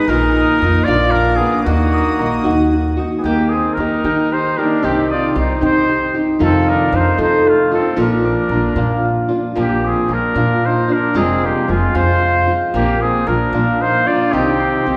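Proud and romantic, this mariachi folk passage moves in 6/8, cut from a longer piece and set in a wet recital hall that lends it the glow of a church or concert space. An up-front trumpet with a vintage, classical-style tone carries the melody, while a second trumpet with light vibrato and a smooth top sits in the background on a lower supporting line. A fingerpicked nylon-string guitar, also up front, provides the accompaniment, its finger squeaks audible in the classical-style playing. A thumb-plucked concert harp spins ringing arpeggios, and a woody pizzicato upright bass with steel strings enters at 0.1 s to anchor the low end. A rich, earthy studio violin section holds bowed chords in the background only until 3.2 s, when the music turns from minor to major.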